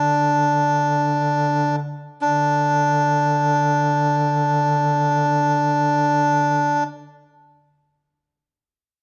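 Longing and mournful, this short excerpt of a Caucasian folk lament unfolds in free time, its pulse slowing down over the first 2.2 seconds before the music moves into a new passage. A melodica carries the melody from 0.0 to 6.8 seconds, its reedy, breathy tone sitting up front with a nasal, airy edge and the woody character of its case. Beneath it, a mellow duduk holds a drone around D3 from 0.0 to 7.0 seconds, close-miked and played in a folk style with vibrato and a punchy presence, though it stays lower in level than the melody. The tuning sits slightly below standard pitch, at A4 = 439 Hz. Light reverb surrounds the two parts, and the sound has a soft top end that lends the lament an intimate, dusky quality.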